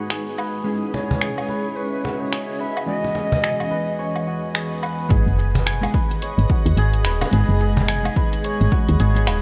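Lightly reverberant and gently pumping, this meditative organic downtempo fragment sets a dark, clean electric guitar under a filter sweep beside a blurred, evolving granular cloud pad and a shimmering, hammered santur, while an up-front, overdriven deep house kit of snaps, metallic hats, shaker and woodblock and a distant, woody cajon carry the swung groove, an airy cedar flute with vibrato and chiff sings from 0.9 to 4.5 seconds, and a round FM bass and punchy electronic kick join at 5.1 seconds.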